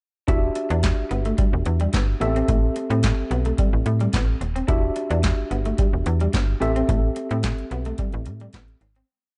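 All four parts start together at 0.3 seconds in this funky, danceable early-eighties boogie funk piece at 109 BPM, where a booming analog drum machine drives a four-on-the-floor beat with a deep kick, crisp snare layered with handclaps and metallic hi-hats, a snappy slap-like FM bass plays a fat syncopated line with chromatic approach notes, a worn, slightly out-of-tune tine electric piano holds lightly overdriven chords with grace notes over Em9 and Am7, and a twangy, slightly broken-up electric guitar picks a muted single-note riff with subtle chorus, all in a dark, dry production that fades out from 6.9 seconds.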